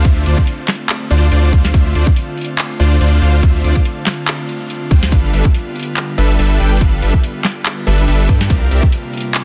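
A deep, saturated sine sub bass and a hard-clipped electronic kick sit up front in this lush, bittersweet half-time future bass excerpt, where huge detuned supersaw chords with dub echo and a soft, breathy background pad pump under sidechain over Dm7 moving to G7 and C7sus4, while a trap kit of woody snare, handclaps and metallic hats drives the groove and a barely audible downlifter slips in near the start, all within a dense, heavily limited digital ambience.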